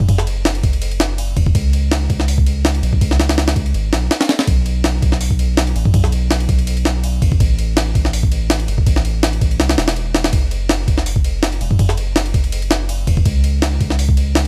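A gritty, pitched-up, compressed jungle sampler-style drum kit sits up front with a thumpy kick, medium-tuned snare, hi-hat and ride cymbal, playing at 164 BPM with a slight 16th-note swing over a deep, round, soft dub sub bass ranging from E1 to C#2, all in light reverb, in this dark, atmospheric drum and bass and jungle excerpt lasting 14.5 seconds.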